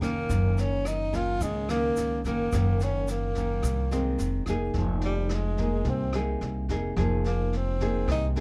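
The recording has little reverb, in a short cut from a longer bossa nova piece in F minor at 108 BPM in a straight 4/4. The mood is intimate and smooth, led by a mellow, close-miked tenor saxophone whose soft attack, vibrato and scooped notes carry the melody in a jazz style up front. A dark, fingerpicked nylon-string guitar in a classical manner accompanies alongside it, its finger squeaks audible, over chords moving from Gb6 to Fm7. A woody, growly pizzicato upright bass sits prominently in the mix, while a brushed drum kit with a boomy kick, rim click and medium-tuned snare sounds distant and roomy behind them. A grainy egg shaker ticks quietly in the background until 4.7 seconds, when the saxophone moves into a solo that runs to the end at 8.4 seconds.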